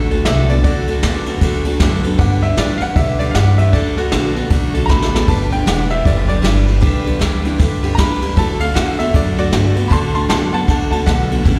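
Rowdy and rollicking, this rockabilly excerpt swings along at 155 BPM in D major, with a bright, slightly detuned upright piano taking the lead throughout, its action noise audible and a slapback echo trailing its notes, over a twangy, slightly broken-up electric guitar riff and a bright, picked dreadnought acoustic guitar with fresh strings, both also carrying slapback. Underneath, a woody, thumpy pizzicato upright bass on gut strings and an up-front brush kit with a boomy kick, dark cymbals and a medium-tuned snare drive the groove, the drums dropping a short fill at 4.9 seconds as the chords move between D and G. It sounds like a live gig heard through the venue's PA, with a small room and a recital-hall reverb around it.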